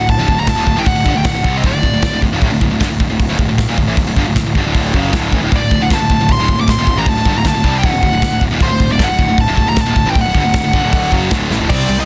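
A dense, heavily limited modern master in a small room ambience frames this dark, relentless heavy metal excerpt in a straight 4/4 drive. A polished, airy studio drum kit sits up front, with a tight kick, a medium-tuned snare and bright cymbals across hi-hat, crash and china. Beneath it, two picked, distorted electric guitars grind out the riff throughout, one pushed further back and the other high-gain, while a growly, fuzz-laden picked bass holds down the low end. A dark, nasal, overdriven lead guitar with a parked wah and digital delay carries the melody at the opening, drops out at 2.2 seconds and returns at 5.6 seconds to sing in its upper register. A drum fill closes the passage, and at 11.7 seconds a double-tracked, high-gain guitar slips in behind the band just before the cut.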